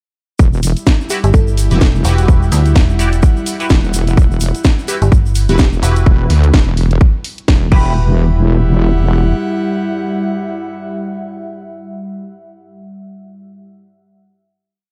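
Bass house with a bouncy, gritty mood and a swung sixteenth-note shuffle, opening straight into a drop at 0.4 seconds that runs until 8.0 seconds before a final note rings out. A tight, tape-tinged electronic kick drives a four-on-the-floor pulse up front, joined by a garage kit's cracking snare, programmed closed and open hats and crash, while a grainy hand-played shaker sits in the background with sixteenths. The heavy, saturated wobble bass carries modulated phrases with changing wobble speed, and from 1.2 seconds a metallic FM bass adds chopped phrases that answer it, both pumping against the kick. Above them, a nasal, band-passed chord stab plays syncopated stabs moving one shape in parallel, with phaser and delay, while a sparkling, bell-like FM electric piano drops short answering phrases in the background. An airy, breathy pad shifts slowly through chords, and a deep, moody ambient pad enters at 3.6 seconds, both sustaining past the drums to carry the final note in a dark, warm production.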